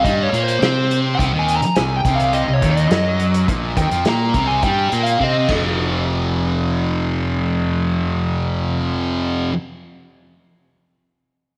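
A straight, steady 4/4 pulse drives this hypnotic, mysterious psychedelic rock fragment: a dark, fuzzy lead guitar with slapback echo solos over a bright, double-tracked phased fuzz riff and an up-front overdriven fingered bass, while a vintage acoustic kit with punchy kick and dark, rolled-off cymbals in a pumping small room plays a fill from 5.2 s before the lead drops out at 5.5 s, as the harmony moves from Cm7 to F5, and the riff and bass carry on alone to 9.5 s, all bathed in a moderate echo-chamber reverb.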